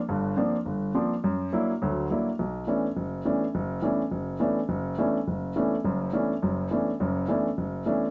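A solo baby grand piano, warm and up front with long sustain, carries this intense, searching jazz excerpt in B minor, playing from 0.1 to 8.0 seconds at a brisk 208 BPM in 4/4 with a swung eighth-note feel. The harmony moves from C9sus4 through F#aug7 before settling on Bm11 at 2.4 seconds, the piano sitting mostly in its lower and middle registers. A moderate studio reverb gives the present piano tone a sense of space.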